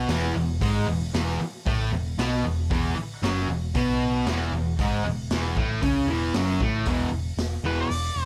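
A double-tracked fuzz guitar riff and a round, dark hollow-body bass open this rowdy, raw garage rock cut, joined almost at once by a gritty, punchy small-room drum kit under light reverb, before an up-front octave-fuzz lead guitar breaks in at 7.7 seconds for a brief solo as the fragment closes.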